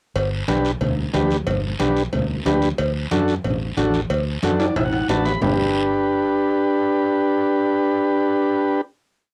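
A short, complete cumbia piece with a festive, sunny mood and a straight four-beat feel. Up front, an overdriven combo organ with a reedy, vintage tone and light vibrato plays rhythmic triad chords, its sound carrying the grain of cassette tape. Beneath it, a dark, round fingered electric bass, foam-muted and direct, plays a cumbia bass figure while a raspy guiro scrapes long and short strokes. Ringing metal-shell cowbell and timbales sit alongside congas played with soft hands, which stay distant in the background on the off-beats. After an organ fill and a drum fill lead out of the groove near 5.4 seconds, the percussion stops and the organ and bass hold a final chord, all captured as a home cassette recording with moderate booth ambience.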